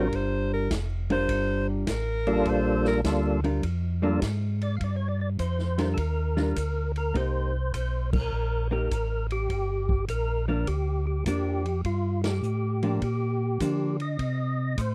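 A bright, forceful alto saxophone opens this bluesy, late-night soul jazz organ trio excerpt in G minor with a short, punchy solo that ends at 3.0 seconds, while a fat, lightly overdriven tonewheel organ with key click, percussion and a slow rotary speaker carries the melody, a dark, clean hollow-body electric guitar adds compressed picked accompaniment, a mellow, round second organ plays the bass through a stopped rotary speaker, and a vintage acoustic drum kit with dark cymbals and a punchy kick swings at 102 BPM over Gm7 and Cm7 changes, the band hitting accents at 8.0 and 12.1 seconds in a dry, close 1970s-style studio sound.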